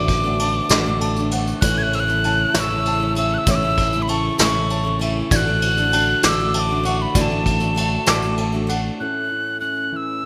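A mellow wooden whistle carries the melody up front with airy vibrato and a breathy chiff, floating over an uplifting indie folk excerpt in 6/8 at 65 BPM in A major, moving between D/A and A chords. Beneath it, a picked steel-string acoustic guitar, a soft felt-muted upright piano, a distant brass ensemble holding dark sustained chords, and a second upright piano with woody arpeggios bathed in lush chorus and digital delay fill out the arrangement, anchored by a punchy fingered electric bass, a brush drum kit with gated reverb and a jingly tambourine set in the background. At 9.0 seconds most parts drop away and a full-bodied fingerpicked plugged-in acoustic guitar with analog chorus joins the whistle, all within a bright 1980s-style digital production.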